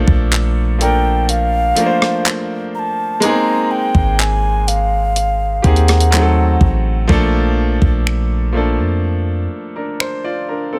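A bright concert grand piano and a deep, boomy 808-style bass open this dreamy, smooth contemporary R&B excerpt, joined almost at once by a crisp 8-bit drum machine of finger snaps, handclaps, hi-hat, rim click and a thumpy kick. From 0.8 seconds an airy, close-miked alto ocarina carries the melody with vibrato and digital delay, stopping at 6.6 seconds as the chords move from Bbmaj7 through Abmaj9 and Adim7 back to Bbmaj7. The bass drops out at 9.5 seconds, leaving piano and drums in the studio ambience.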